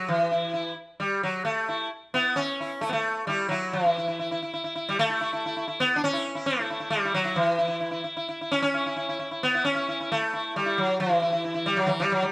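A solo sitar opens the recording and carries it through to the end at 12.3 seconds, its plucked tone buzzing, with sympathetic strings adding a shimmering halo. This is Indian classical music in raga Bageshri, centred on E, with a longing, introspective mood at 132 BPM in a straight 4/4. The sitar sits up front and moves within the octave from E3 to E4, tuned to A4 = 442 Hz. A new section begins at 3.7 seconds and continues to the close. The performance was captured live in one room, with a moderate stone-room reverb lending a natural sense of space to this fragment cut from a longer piece.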